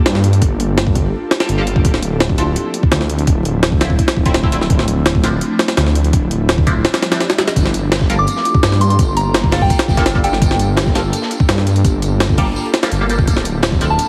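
A gritty, pitched-up sampler-style jungle kit leads this frenetic, raw drum and bass excerpt at 168 BPM in G minor, its thumpy kick and high-tuned snare sitting up front with a compressed, tape-warm punch. Beneath it, a thick, detuned saw bass growls with a beating, menacing edge, saturated yet mellow and sustained across the full length. From 1.4 seconds a band-passed chord stab adds nasal, bright filter plucks shaded by phaser, analog chorus, cassette tape character and dub echo, moving between Gm9 and Dm9. A very quiet electronic swell at 7.0 seconds ushers in a second, crunchy breakbeat kit of high-passed hats, snare and tambourine that stays saturated and rolled-off in the background, while a soft, pure FM bell sketches a gentle melody from 8.2 seconds with chorus and dub echo. The whole mix sits in a small, lightly reverberant room and comes across as heavily compressed radio sound laced with vinyl crackle.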